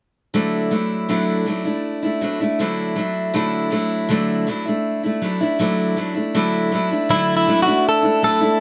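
Heartfelt and carefree, this short pop excerpt in D major at 80 BPM opens on a Dadd9 chord from an up-front, picked steel-string acoustic guitar with an auditorium-sized body, joined at 7.1 seconds by a clean, compressed, direct-recorded electric guitar carrying the melody, all set in a dry, close 1970s-style studio sound with studio reverb.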